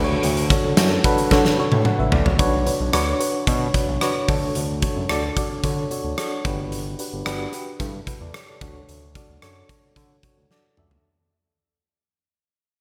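1980s-style pop at 111 BPM in D major, glossy and uplifting, where a mellow, up-front FM electric piano with tremolo and a noise layer carries chords from Dmaj7 through Bmadd9 and Gmaj7 over a smooth, saturated sawtooth-and-square synth bass with vibrato, while a big rock drum kit with a fat snare, punchy kick, tambourine and toms sounds in gated reverb and plays fills at 1.3 and 10.5 seconds, and the bright digital mix sits in a lush hall as it fades out from 2.4 seconds.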